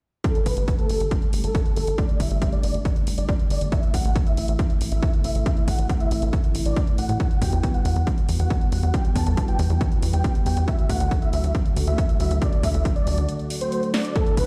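An uplifting, soaring trance passage opens at 0.2 s with huge, detuned supersaw chords carrying the melody through cassette tape, low-pass filter, digital delay and sidechain pumping, over a thick, warbling vintage pad with chorus and a heavy, overdriven kick placed up front, alongside a techno kit whose punchy snare and hi-hat are also overdriven. A tight, nasal sequencer bass with a filter pluck enters at 0.5 s, pumping beneath a progression of Gsus2, Am, Emadd9 and D. The sound is fairly dry yet carries a stone room's reverb, as if played on a big system in a bare space, and a short break at 13.3 s brings a drum fill at 13.9 s.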